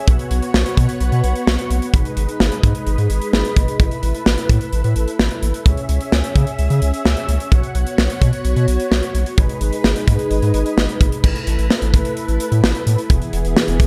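Cool and melancholic, this synth-pop excerpt moves at 129 BPM in a straight 4/4, with a vintage, organ-like ensemble string patch holding sustained chorused chords from 0.0 seconds over a round, nasal analog bass and an airy, polished acoustic studio kit of tight kick, medium-tuned snare, hi-hat and crash, cycling through Bsus2, G#m, Asus2 and C#m before shifting into a new section at 11.2 seconds that lands on E, all set in a dark production with light small-room reverb.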